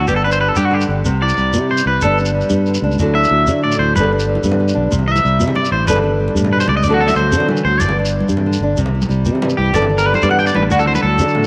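Highlife guitar band music in G major, warm and danceable, moving at 124 BPM in a straight 12/8 over a cycle of G, C and Dadd9 chords. An up-front electric guitar on the edge of break-up plays twangy, scooped arpeggios with slapback echo, while a small, fingerpicked nylon-string guitar supplies accompaniment and a round, dark fingered electric bass sits close in the mix. A grainy, dry shekere runs throughout, ringing hard-hand congas join in the background at 4.0 seconds, and a drum fill closes this short excerpt at 11.0 seconds, all set in light small-room ambience.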